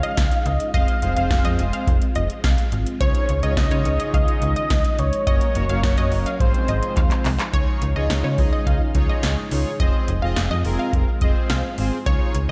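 A straight 4/4 beat from a dry, up-front analog drum machine with deep kick, punchy snare, handclaps and metallic hats drives this bright, upbeat synth-pop fragment, with a snappy FM slap bass, a dark vintage string-machine cello pad in the background, fat sawtooth synth brass entering at 0.7 s, a lush detuned unison pluck with delay and slapback echo, and a bold, retro octave-doubled lead with chorus, phaser and delay that stops at 7.2 s as a drum fill carries into a new section at 7.5 s, all set in a big arena-style hall reverb.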